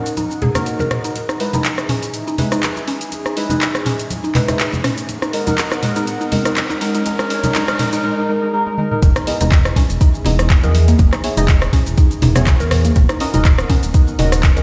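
Swung sixteenths at 122 BPM drive this earthy afro house cut, taken from a longer piece, with an electronic afro-pop kit of cabasa, handclaps, metallic hi-hats, rim clicks and toms alongside ringing, acoustic congas that sound as if captured in a small room. Underneath, a smooth, dark sawtooth-and-square synth bass glides between notes with sidechain pumping, while a mallet-like FM pluck spins woody, round arpeggios through chorus, phaser and delay. Deep, soft chord stabs with a wave-folded edge pump to the sidechain as well, and a slow-blooming analog pad with a sub octave sits in the background, also pumping, as the harmony moves between Ebm, Emaj7 and Ebm7. The opening is a build-up, with a very quiet electronic riser entering at 3.7 seconds and a drum fill at 8.7 seconds. At 9.0 seconds the drop lands with a deep, up-front electronic kick driving the groove forward. A lush hall reverb wraps the mix, which sounds like a big sound system playing in a bare stone room.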